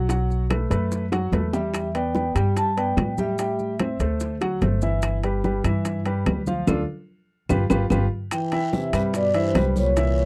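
Afro-Cuban jazz with a sunny, danceable mood at 146 BPM in G major, this dry, close 1970s-style studio cut sets a clear, intimate concert grand piano and a growly, woody upright bass up front, over background congas, round low-tuned bongos and grainy maracas, with ringing metal-shell timbales and compressed, saturated claves. A mellow vibraphone with soft mallets carries the melody from 1.5 to 3.8 seconds, a drum fill at 1.1 seconds leads into the progression through Em7, Am7, D7 and G6, and a band accent from 6.7 seconds marks the Dm and G7 changes. At 8.3 seconds the vibraphone returns on Cmaj7 alongside a breathy, whispered trombone line and a raspy guiro.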